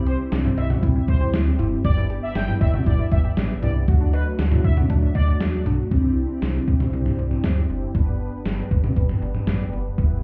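Synth-pop at 118 BPM in G major, this nostalgic, bright excerpt moves from C through G and D to Cadd9 and back to G, with a gated 80s drum machine, thumpy and overdriven, and a snappy, metallic FM bass sitting up front. Round, detuned synth brass, treated with chorus and phaser, carries the accompaniment throughout, while a warbling, lo-fi pluck plays arpeggios in the background and a fat, wave-folded analog brass line with ring modulation adds a second line until about 5.3 s. The whole mix sounds muffled as if heard through a wall, bathed in club reverb.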